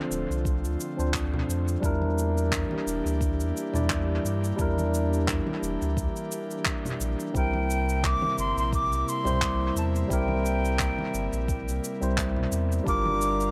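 Relaxed and wistful, this sunset chillout excerpt moves at 87 BPM in 4/4 with a gentle sixteenth-note swing, as a bright, up-front tine electric piano with low-pass filtering and tape echo and an airy, detuned pad with chorus carry the chords from Dm7 through Em7b5 and C7 to Gm7. A round sine sub bass anchors the low end beneath a deep, layered electronic kick, mid-forward cabasa and handclaps with analog delay, and soft-handed vintage congas sitting in the background. At 7.4 seconds a breathy, straight-toned concert flute enters high with analog delay, its slightly unsteady tongued line floating over a spring-reverb, echo-heavy mix.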